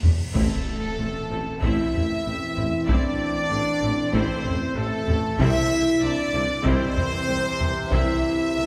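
Taiko ensemble struck with hard sticks drives a straight 4/4 pulse at 95 BPM in this dark, heroic cinematic orchestral cue in A minor, cut from a longer piece. It opens on a drum fill and a huge, bright cymbal swell that lands as an impact at 0.4 seconds, ringing until 2.9 seconds. A dark, roomy French horn section and a smooth-topped trombone section hold sustained chords, moving from A minor to C at 5.4 seconds, while a clear trumpet section punches loose stabs in the upper register. The symphonic violin section carries a very quiet, smooth melody with light vibrato, joined by an intimate sul tasto chamber violin second line, as a lush, distant viola section fills in the accompaniment. Underneath, a focused studio cello section, an expressive chamber double bass section and a vintage-toned solo tuba anchor the low end. The whole ensemble sits in a wet scoring-stage reverb with a concert-hall or church sense of space, the close, forward taiko dominating the mix.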